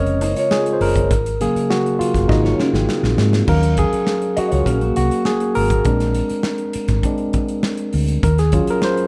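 Silky and cinematic, this short cut from a longer piece is lush 1970s-style soul in a straight four-beat feel. A bright, barky tine electric piano sits up front and carries a solo through both sections, moving over chords such as Bbm7, Ab9sus4, Ebm7 and Bb7. Beneath it, a dark, round hollow-body short-scale bass gives a punchy, amped foundation, while a mellow, compressed electric guitar plays a clean fingered riff through a phaser until about 5.7 seconds. The acoustic drum kit brings a medium-tuned snare, a punchy kick, hi-hat and crash in a pumping studio room, with a fill running from 2.3 to 3.5 seconds that leads into the second section. Studio reverb surrounds the band, and the whole thing has the feel of a rough home demo mix.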